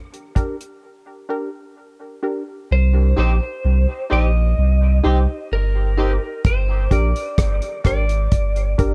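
Hypnotic and spacious, this dub reggae excerpt moves at a slow 64 BPM in 4/4 with a straight feel, in C minor. A damped, dry 70s drum kit sits up front with hi-hat, tight kick and rim click, sounding briefly at the opening before dropping out and returning at 6.4 seconds. Filtered chord stabs, muted and detuned with a mellow sawtooth filter pluck, float through chorus and dub echo almost from the start. At 2.7 seconds a deep, round sine sub bass arrives alongside a slightly broken-up, compressed lead guitar melody that also trails dub echo. For a stretch in the middle, a bright, twangy, clean electric guitar adds quiet accompaniment through lush chorus, while the harmony moves from Gm to Cm and back to Gm inside a dark, warm studio reverb.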